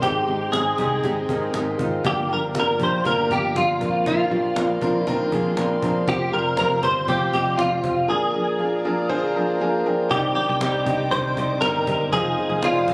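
A straight 4/4 pulse at 119 BPM from a woody, hard-handed cajon drives this bittersweet, dramatic piano-driven pop passage in C minor, cut from a longer piece, where an up-front, compressed clean electric guitar carries the melody with ensemble chorus over an intimate concert grand that shows audible action noise and adds fills at 4.6 and 9.1 seconds, a growly, punchy picked electric bass, a very quiet fingerpicked dreadnought acoustic guitar riff, and reedy, gut-string sustained chords from a background string section, before a clear French horn section slips in with a second line at 10.1 seconds, the whole mix caught on a phone in the room with club reverb and compression.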